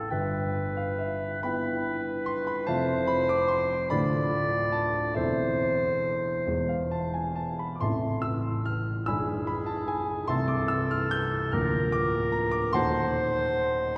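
A warm, distant clarinet carries the melody from start to finish in this elegiac, yearning excerpt from a romantic classical duo. It is set in A minor and 6/8 at a slow, rubato 44-50 BPM, counted in dotted quarters. Beneath it, a dark, mellow grand piano ranges from A0 up to G6 in accompaniment, moving through harmonies such as Fmaj7, Am/E and E7/B before arriving on a D#dim7 at 12.7 seconds, all bathed in a long church reverb.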